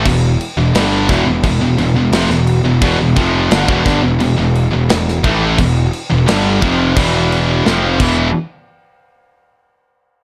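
Relentless and dark, this heavy metal excerpt moves at 87 BPM in a straight 4/4 feel, centred on E phrygian. Three picked, high-gain electric guitars play a riff between E2 and A3 with a bright, distorted edge; one is scooped, another is double-tracked and very quiet, and they sit in the background. Up front, a growly picked bass with fuzz overdrive holds the low end from E1 to A1. A tight acoustic kit of kick, medium-tuned snare and crash cymbal sounds mid-forward in a studio room, and a drum fill enters at 7.7 s, while the Em harmony moves to an E5 chord at 8.0 s. The band stops at 8.3 s, giving way to a brief chordless stretch within a dark production touched by light reverb.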